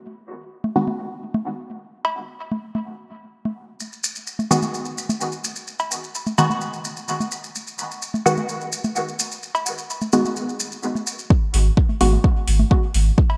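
A bright, 1980s-style digital sheen and a lush hall reverb frame this hazy, meditative dub techno excerpt in G# minor at 128 BPM, where tape-warm electronic congas and cowbell pump with sidechain and dub echo from 0.6 seconds, and grainy acoustic maracas join at 3.8 seconds. A muted, detuned sawtooth chord stab outlines G#m7 with phaser, 12-bit sampler grit, pumping and dub echo. At 11.3 seconds the stab's filter begins to sweep as an up-front overdriven kick arrives, joined by metallic overdriven hi-hats and a round, soft sub bass on G#1.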